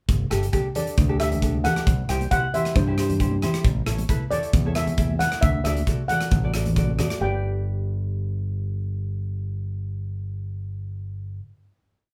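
A small, reverberant room captures a band playing live together on this short, carefree calypso piece in G major at 135 BPM. A mellow, shimmering steel pan, struck with soft rubber sticks, carries a motif-based lead melody from 0.8 seconds. Beneath it sit light fingerpicked ukulele chords, a bright, up-front fingered electric bass playing root and fifth in a two-feel, a polished studio drum kit with punchy kick, hi-hat and rim click in a calypso groove, and ringing, high-tuned congas played with soft hands in the background. The drums drop out at 7.2 seconds and the congas by 7.4 seconds, leaving pan, ukulele and bass on a closing G chord.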